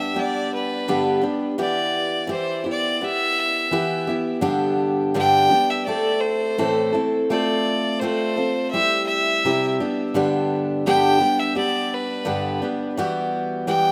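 A biting, bright fiddle with light vibrato and analog delay carries the melody over a picked dreadnought steel-string acoustic guitar with audible finger squeak, both up front from the start in this jangly, nostalgic rock passage at 84 BPM in G major, where chords move from G through Em, Am, F/A and C to close on Emadd9, all set in a lush hall reverb with the rough feel of a home demo, cut from a longer piece.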